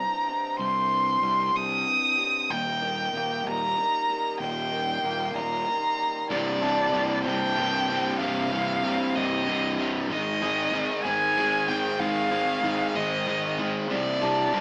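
Melancholic and cathartic, this slow 6/8 post-rock excerpt sets a veiled, muted violin melody up front over twangy, phaser-tinged guitar arpeggios and faint, earthy chamber strings, with a round fuzz bass entering at 0.6 seconds during the build-up before a bright, double-tracked distorted guitar riff surges in at 6.3 seconds, all in a live-room sound with wet reverb and a small-speaker quality.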